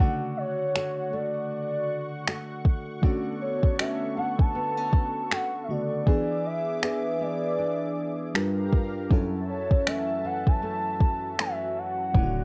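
An overdriven, up-front R&B drum kit of finger snaps and soft kick comes in at 0.8 seconds, its electronic, produced sound roughened with a cassette-tape grit. This contemporary R&B excerpt carries a longing, late-night mood over a lightly swung groove. A smooth, mellow portamento lead glides on top with vibrato and chorus, carrying the melody through a Dmaj7, Bm9/D, E7, Gm7 and F#m7 progression. Beneath it, a dreamy, detuned FM electric piano layered with a soft pad supplies dark, full-bodied chords, while a fingerpicked nylon-string guitar adds acoustic arpeggios complete with finger squeak. A thick, airy unison pad with a slow attack sits further back, sustaining the harmony through chorus and phaser. A deep, boomy 808-style bass only arrives at 12.1 seconds, just before the cut, and the whole piece has a homemade cassette character with light reverb.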